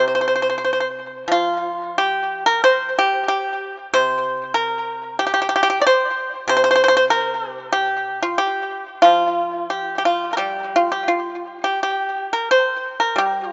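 A solo pipa opens this brief passage of Chinese traditional music, plucked with fingerpicks in a free, rubato 4/4 around 82-96 BPM, moving through the G yu mode between C3 and D5 with a longing, contemplative air. The pipa sits up front, dry and percussive in attack yet warm in body and touched by tape echo, and a new section arrives at 11.8 s before the cut at 13.5 s. Light reverb and small room ambience frame a rough home demo mix whose highs stop at 7.7 kHz.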